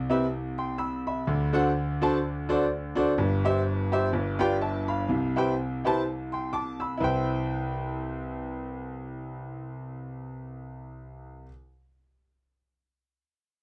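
Hopeful and jubilant, this short gospel cut from a longer piece swings gently in 4/4 as a clear, intimate grand piano plays accompaniment from start to finish, its boxy, up-front tone and audible action noise captured in a dry, close 1970s-style studio sound with light reverb, moving from Cmaj7 through D7 and G7 before a new section arrives at 7.0 seconds.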